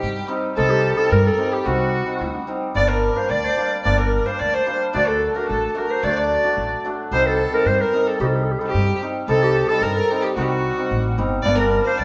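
A straight two-beat pulse carries this soulful, bittersweet klezmer excerpt, where a raspy, growling clarinet with scooped notes and light vibrato leads the melody over a rich, expressive bowed violin second line with portamento, a bright, shimmering hammered dulcimer accompaniment and a woody, dark pizzicato upright bass, the band playing live together in a stone room whose wet reverb surrounds the chords as they move from Cm through Gm to D.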